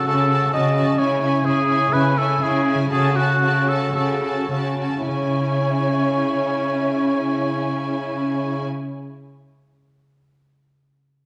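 A dark, reverberant scoring-stage sound frames this urgent, stormy excerpt from a fast romantic orchestral movement in C# minor, where a focused high violin melody rides over a mellow, up-front oboe line and soft-edged second violins, a portamento-tinged viola accompaniment sits in the background beside ringing harp arpeggios, a smooth, even cello bass holds the low end, and the tempo slows down through the first 5.1 seconds before the harp alone carries on to 9.0 seconds.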